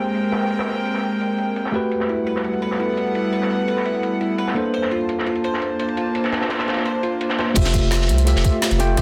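A clean tine electric piano with dub echo and an airy, breathy pad with sidechain pumping open this uplifting, dreamy liquid drum and bass excerpt at 170 BPM in F major, as the piano's filter sweep unfolds over a woody-snared, metallic-hatted garage kit and a gritty, saturated breakbeat kit; a mellow, harp-like synth pluck adds ringing arpeggios with tape echo from 2.1 seconds, and at 7.6 seconds the drop brings in a deep, thick sub bass and a tight electronic kick, all in a lush hall reverb under a dense, heavily limited master.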